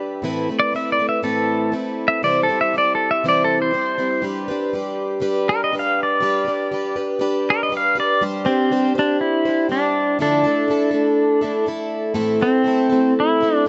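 Bathed in a moderate plate reverb with a softly rounded top end, this jangly rock excerpt sets a shimmering, octave-doubled plugged-in twelve-string acoustic guitar picking out a full-bodied accompaniment from an opening Amadd9 while a clean, compressed pedal steel guitar, played with fingerpicks and carrying volume swells, slide and an analog delay, takes a warm, up-front melodic solo through the first 8.2 seconds before moving on over Gsus4 and Dmadd9 to close on Am.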